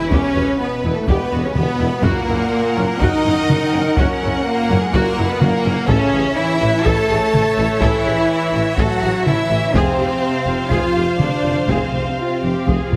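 This epic orchestral film score has a dark mood and a straight 4/4 feel, cut from a longer piece. Close, dry taiko drums struck with heavy sticks sit near the listener, while further back a clear French horn section holds sustained chords and a mellow trombone section with a smooth top sustains the chords beneath. Also in the background, a lush symphonic violin section carries the melody with even vibrato, joined by a rich, expressive chamber violin section on a second line and a focused studio viola section in accompaniment. The low end comes from a symphonic cello section, a woody double bass section with light vibrato, and a distant, roomy solo tuba. The harmony moves from Em to F#, reaching A at 5.9 seconds and Fm at 9.7 seconds, set in a wet scoring-stage reverb with a heavily compressed, radio-like finish.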